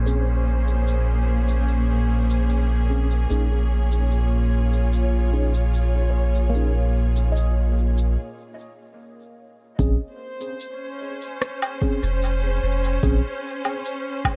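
A round, soft dub sub bass sits up front in this deep, spacious ambient dub fragment, beneath lush, woody bowed strings holding dark sustained chords, ringing handpan arpeggios and mellow tine electric piano stabs that drift through dub echo while a filter sweeps the piano, tape-warm electronic shaker, rim click and woodblock tick along until a brief break at 8.2 seconds, and a layered, deep electronic kick arrives at 9.8 seconds.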